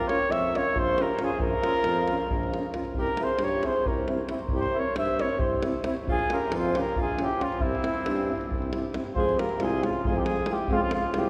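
A wet cathedral reverb with a 6.8-second tail fills this brief cut from a Balkan brass band piece, setting a bittersweet, restless 7/8 groove at 272 BPM in eighths, in C phrygian dominant, moving from Bbm and C to Fm at 9.2 s. Up front, a mellow flugelhorn carries the melody with light vibrato and a distant, roomy presence, while a close-miked alto saxophone adds a second line with vibrato in the background. A dark, soft-attacked euphonium and a bright, vintage trombone, very quiet, supply accompaniment over a clear tuba bass entering at 0.3 s, the brass and saxophone all played in a classical style, and a deep, dry davul drives the percussion.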